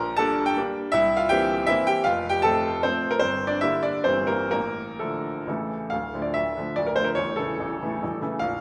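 Wistful and nostalgic, this short excerpt from a romantic classical dance in triple time unfolds with rubato and dotted rhythms on a solo grand piano, its bright, brilliant tone sitting up front with long sustain and an open ring, framed by a moderate stage reverb as the harmony drifts through its D minor progression before settling into a new section at 5.9 seconds.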